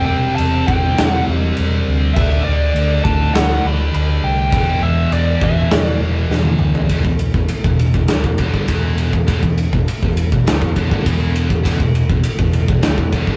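A rough rehearsal-room sound with warm saturation and a moderate studio reverb frames this driving, heavy hard rock excerpt in a straight four-four. A biting, overdriven lead guitar carries the melody high up for the opening 6.0 seconds, while a scooped, high-gain guitar and a very quiet, sludgy distorted guitar churn through the riff underneath. An amped, growly electric bass with a punchy, picked attack sits strongly in the low end. The big rock drum kit arrives at 0.4 seconds, dark and smooth in a big room, placed up front with a punchy kick, a medium-tuned snare, toms and crash and ride cymbals. A drum fill at 6.3 seconds leads into a second section on a plain E minor chord, where the riff guitars, bass and drums drive on heavily through the close.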